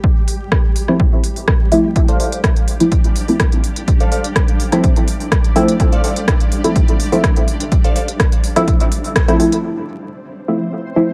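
Deep and nocturnal, this dub techno excerpt moves at 125 BPM in straight 4/4 time in D minor, drifting from Dm7 to Fmaj7 at 9.6 seconds. A dry, punchy analog kick sits up front from the start, joined at 0.3 seconds by a deep house kit of smooth hi-hats and rim clicks with a small-room character. A muted, detuned sawtooth dub chord stab carries the harmony, thickened with chorus and phaser, pumping against the kick and trailing dub echo while a filter sweep moves across it until 9.6 seconds. Higher up, a crisp wavetable stab with a plucky filter and moving notch adds a mellow riff between 2.1 and 8.1 seconds, also pumping and echoing. Throughout hovers a grainy, flickering granular texture with a slow attack and long release, bathed in its own reverb, while vinyl crackle and light reverb lend the mix a dusty, late-night haze, with a band accent landing just before the chord change.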